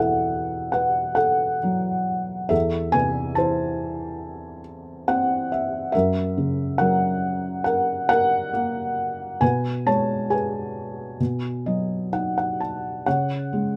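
A felt-muted upright piano, soft, dark and intimate with audible action noise, plays a peaceful, lyrical classical passage alone in unhurried rubato, its close, detailed sound touched by light reverb as brief fills at 4.7 and 11.2 seconds colour chords that drift from Eadd9 through Am/E, F#, Amaj9/B and B to a closing C#5 in this short cut from a longer piece.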